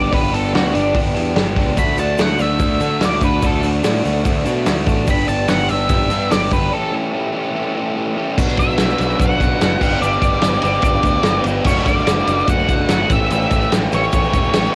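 A straight 4/4 pulse drives this jangly, wistful indie rock excerpt, cut from a longer piece and recorded at home on cassette with little reverb. A dark octave-fuzz lead guitar solos over the opening until a break at 6.7 seconds, backed by a bright overdriven electric guitar riff, a lo-fi garage guitar with chorus and delay tucked in the background until 8.4 seconds, a growly, punchy picked bass, and an up-front loose drum kit with a gritty, saturated sound and rolled-off top. A grainy egg shaker sits quietly behind from 1.8 seconds, while the chords move from G, D and A7 into a passage built on B minor.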